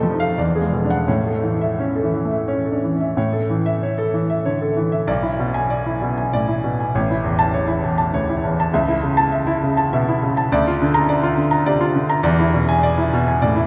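A clear grand piano carries this short romantic character piece alone, its smooth, vintage tone sitting up front with a short sustain. Set in A major and 3/4, the music moves with rubato between 83 and 109 BPM, giving it a lyrical, hopeful mood. The piano spans a broad range from A1 up to Bb5, and the harmony moves through E9, A and E7/B before touching A/C# and a colourful Bb/D and then settling on E7 near 12.2 seconds. A vast cathedral reverb with a long 6.2-second decay wraps the playing in an echoing halo that blurs the edges of each phrase. The passage opens with a brief statement that is then taken up again at 3.2 seconds, and as a fragment cut from a longer work it ends at 13.7 seconds still poised on that dominant chord.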